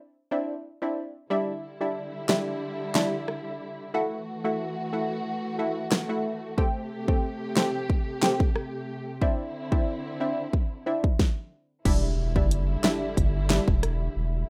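A bouncy, hypnotic dancehall excerpt in which nasal, detuned chord stabs with chorus and a pumping feel ride over dark, woody strings, a punchy, fat-snared electronic drum kit joins at 2.3 seconds, and after a brief stop a thick, saturated sub bass arrives at 11.9 seconds, followed by a very quiet electronic impact at 12.0 seconds, all in a rough home-demo mix with moderate room reverb.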